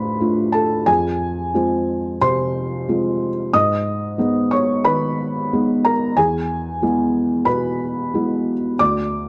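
A felt-muted upright piano plays alone for just over nine seconds in this wistful, melancholic fragment of neoclassical minimalist piano, moving with a rubato feel around 91 BPM in 4/4 through D minor, F minor, G-sharp minor and E, its soft, boxy, thick-felt tone sitting up front and intimate with audible action noise and a light reverb, spanning D2 to D#6 on an instrument tuned to A4 = 439 Hz.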